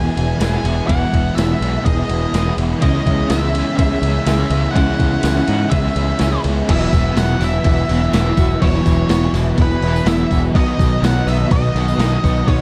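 This hazy, wistful shoegaze and dream pop excerpt opens at 124 BPM in E major with a dark octave-fuzz lead guitar carrying the melody through distortion and analog delay, over a very quiet, fingered clean guitar arpeggio and a thick bed of overdriven riffs: a biting guitar with ensemble chorus in the background, a crunchy double-tracked guitar, and a hollow-bodied semi-hollow guitar. A growling, punchy picked bass sits up front with overdrive, and a gated 80s drum machine with a thumpy kick and gated-reverb snare joins at 0.2 seconds, followed by a jingly tambourine at 0.4 seconds. The dark, dry production moves from Emaj7 and C#m7 into a second section at 6.7 seconds built on Esus2 and B.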